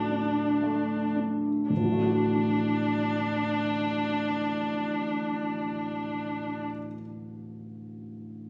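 A bowed viola and a concert grand piano begin together on a D chord, opening this short, tender fragment of a romantic classical duo in D major. The music moves in a slow, rubato 12/8 at 40 BPM by dotted quarters, and it slows down through the first 1.7 seconds before a new section begins. The single viola carries the melody around D4 with smooth, even vibrato and a silky top, sitting up front. The piano accompanies from a deep bass at D1 up to F#4, with a warm tone that is also close to the listener. After the viola stops at 6.6 seconds, the piano continues until 8.5 seconds, heard through a moderate recital-hall reverb plus a club-like reverb and compression, with the character of a phone recording made in the room.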